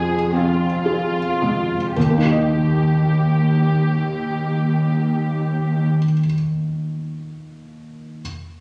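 A felt-muted upright piano sits up front, mellow and intimate with audible action noise, carrying the accompaniment of this tender, moving cinematic film-score fragment in Eb major, played rubato in 6/8 at 38 BPM and slowing down through the opening 2.0 seconds as the harmony moves from Fm to Eb. Beneath it, a distant con sordino violin section adds a veiled second line with vibrato, while a dark, bowed cello section holds the bass in the background with light vibrato. Both string sections stop at 5.9 s, leaving the piano alone until 8.2 s, and the whole is heard as if captured on a phone in the room, with compression and club-like reverb layered over the scoring-stage ambience.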